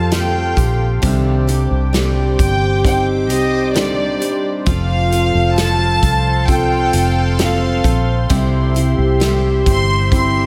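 This tender, emotional pop ballad excerpt opens at a slow 66 BPM with a warm chamber violin section carrying the melody over a mellow, close-miked French horn section in the background, an intimate vintage grand piano with audible action noise, and warm picked steel-string acoustic guitar arpeggios. A round, dark, foam-muted electric bass sits up front beside a natural country drum kit with a punchy kick, while a bright, detuned sawtooth pad with chorus holds evolving, sustained chords above. The harmony moves from Fadd9 to Cmadd9, then F and C, all in light reverb and small-room ambience.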